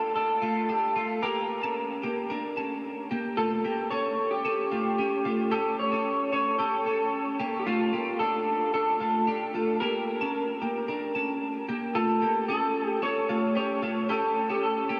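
Bittersweet and wistful, this indie pop passage, cut from a longer piece, moves at a straight 112 BPM in 4/4 through a Dm, Gm and A progression, its two guitars drifting in a dreamy haze of huge ambient reverb. An electric guitar through a small old amp carries the melody up front with a dark, slightly broken-up, lo-fi tone, fingered and compressed, and bathed in lush chorus. Alongside it, a twelve-string electric guitar spins bright, clean picked arpeggios with subtle chorus across the full 15 seconds.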